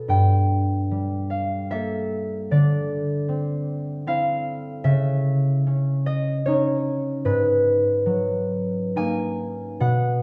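In a rubato 3/4 at 75 BPM, this dreamy, peaceful classical fragment, cut from a longer piece, features a solo concert harp, thumb-plucked, ringing and up front, spanning G2 to A5 and tuned to A4 = 436 Hz as it moves through Gmadd9, Dm9, C#madd9 and Abm9 chords in a recital hall with moderate reverb.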